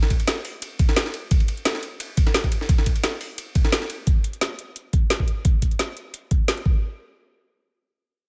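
A gritty, compressed breakbeat kit with a high-tuned snare and filtered hats, ride and snare opens this rolling, dreamy liquid drum and bass excerpt at 174 BPM in 4/4, with a gentle swing on the 16ths, before dropping away at 4.0 s. A pitched-up, tape-warm electronic kick with a thumpy punch sits up front beside a layered garage kit of woody snare and metallic hats, re-recorded in a small room, both running to about 6.7 s. The drums are dry and close, and a brief second section begins at 6.8 s.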